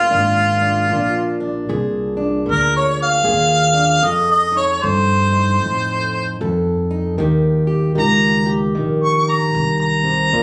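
A warm, vibrato-laden harmonica with scooped notes carries the jazz-style solo melody up front in this gritty, soulful acoustic country blues excerpt at 76 BPM with a swung 4/4 feel in Bb mixolydian, its plate reverb giving it a distant, roomy air over a boxy, fingerpicked plugged-in acoustic guitar and a woody pizzicato upright bass moving through Bb7, F7 and Eb7, all captured on a phone in a small club room.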